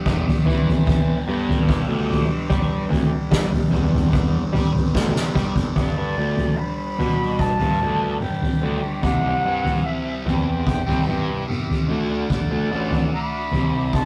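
A rough rehearsal-room recording with tube saturation and light reverb frames this hazy, hypnotic psychedelic rock at 74 BPM in G major, tuned to A4 = 437 Hz. A growly, overdriven fuzz bass sits up front beside a soft-mallet drum kit with a punchy kick, while a double-tracked, compressed fuzz guitar riff with distortion and phaser runs above very quiet sustained tonewheel organ chords through a slow rotary speaker. After a drum fill at 4.9 seconds, a distant, airy silver concert flute enters at 5.8 seconds with vibrato and slapback echo, carrying an expressive melody as the chords move from G to C and D.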